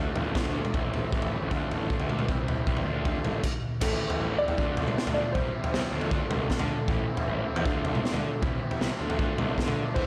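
A punchy, high-tuned raw garage drum kit sits up front in a gritty, pumping stone room, driving this restless, bittersweet indie rock excerpt at 156 BPM alongside a bright overdriven garage guitar riff and a growly fuzz bass, with a break from 3.4 to 3.8 seconds before a dark, woody upright piano melody drifts in through plate reverb and tape echo at 3.8 seconds over the Dm-Am-C changes, and a distorted electric guitar with subtle chorus appears only at 10.0 seconds.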